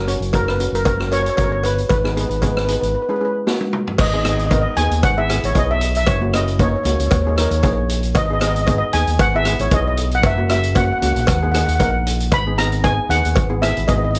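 A metallic, shimmering double-seconds steel pan, played with hard rubber sticks and trailed by a slapback echo, carries the melody in this brooding, cool calypso excerpt in G# minor at 115 BPM, with a light sixteenth-note swing over changes such as G#m, E/G#, F#7 and D#sus4. A second double-seconds pan, close-miked, dry and full, sits up front as accompaniment. Beside it, a punchy, round, overdriven fingered electric bass and a small-room street-band kit (boomy kick, medium-tuned snare, rim clicks, toms, hi-hat and dark crash) play, the kit rolling into a fill at 3.5 seconds, while a close cowbell stays in the background and moderate studio reverb lends the mix a modest sense of space.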